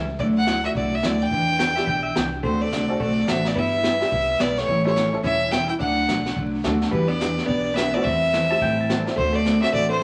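A brisk 214 BPM swing in 4/4 drives this playful western swing excerpt, where an up-front, earthy fiddle carries the melody over picked acoustic guitar, growly pizzicato upright bass, distant brushed drums and a jangly, detuned honky-tonk piano in the background, while a twangy pedal steel slips in briefly at 1.6 seconds and a dark, clean hollow-body jazz guitar joins at 2.4 seconds, all set in a large reverberant studio with vinyl crackle.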